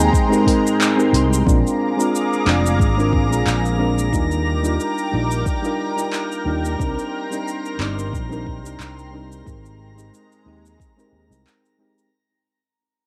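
Sunset chillout cut from a longer piece, smooth and blissful, where a boxy grand piano touches a single note at the start, soft warbling electric-piano-like keys and a lush detuned pad carry the chords over a growly fretless bass, a deep house kit with smooth hats, handclaps and shaker, and a deep electronic kick that drops out briefly at 0.8 seconds along with a band accent, while a glassy drifting harmonics texture enters at 1.9 seconds as the whole spring-reverbed cassette recording fades out from 1.5 seconds.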